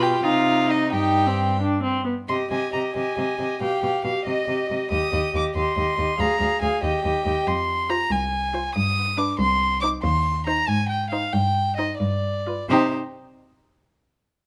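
A close, reedy first violin carries the melody up front in this restless, urgent excerpt from a quick classical-period string quartet movement in C minor, taken at 92 BPM in a rubato 6/8, with a second violin on a supporting line, a viola with light vibrato filling in the accompaniment and a rich gut-string cello holding the bass up front, in a lightly reverberant room as the harmony moves through E-flat and F minor before returning to C minor at 12.7 seconds.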